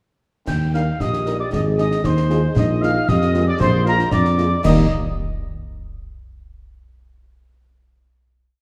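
Rousing and proud, this complete military-style wind-band march in Eb major moves at 115 BPM in a straight 2/4, with a distant, roomy trumpet section carrying the melody while an airy piccolo with vibrato doubles the tune at the octave, a dark, close-miked tuba sits up front playing bass on the beats, concert snare drum, bright clash cymbals and concert bass drum drive a marching snare over a bass drum on the beat, a mellow French horn section enters at 0.7 s with after-beat and sustained chords in the background, and a smooth-topped euphonium weaves a counter-melody from 1.0 to 4.2 s, all set in a wet scoring-stage reverb before the band settles on a final Eb chord at 4.6 s.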